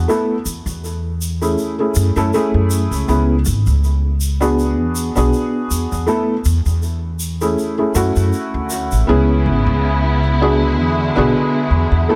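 A felt-muted upright piano and a pizzicato upright bass open this dark, hypnotic trip hop excerpt at a slow 80 BPM in 4/4, with a gentle 16th-note swing in C# phrygian. The piano sits up front with a soft, boxy, intimate tone, its mechanical action noise audible beneath a harmonic tremolo and tape echo. The bass is woody and thumpy on steel strings, also placed close and forward. A distant tube shaker ticks along in a large-room space until 9.0 seconds. At 9.1 seconds a lush studio string section arrives with smooth, bowed sustained chords, rich vibrato, and a vintage 12-bit sampler grit. The harmony circles through Asus2/E, F#m7, C#m7 and E7, briefly touching Dmaj7 before the strings enter, all set in light reverb and a small room ambience.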